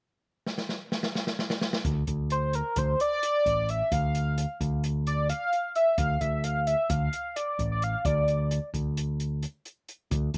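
A driving 9/8 pulse at 261 BPM in eighths opens this brooding progressive instrumental in D minor, cut from a longer piece. An open jazz drum kit starts with a fill at 0.5 seconds, its boomy kick, medium-tuned snare and hi-hat sounding dark and smooth with a rolled-off top. At 1.8 seconds a picked electric bass enters on a D minor chord, round and amped in its low register. From 2.3 to 8.7 seconds a pulse-width lead carries the melody, its shimmering, nasal, detuned tone given a retro cast by chorus, phaser, slapback echo and vibrato. All three parts sit up front in a dry sound with little reverb.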